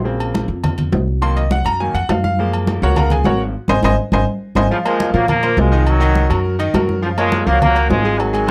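A straight, danceable salsa groove in 4/4 carries this passionate fragment. The worn, bright concert grand piano takes a solo up front over thumpy gut-string upright bass, thin-skinned congas, and ringing agogo bells and timbales set in the background, before a drum fill and band accent at 3.5 seconds hand the melody to a tight, brilliant trombone section with light vibrato at 4.7 seconds, all captured in a dry, close 1970s-style studio sound.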